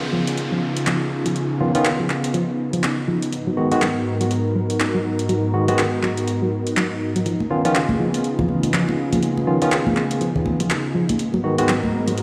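A detuned, warbling analog pad with chorus opens this moody 122 BPM deep house excerpt over a brief electronic downlifter, joined by a soft, round chorused pluck arpeggio with analog delay and a swung kit of handclaps and metallic hi-hats, while a bright, barky tine electric piano stabs through a low-pass filter and tape echo from 1.6 s and high-tuned, thin-skinned congas arrive at 7.4 s, all circling C#9 and G#m7 in a lush hall sound heard through a big sound system in a bare room.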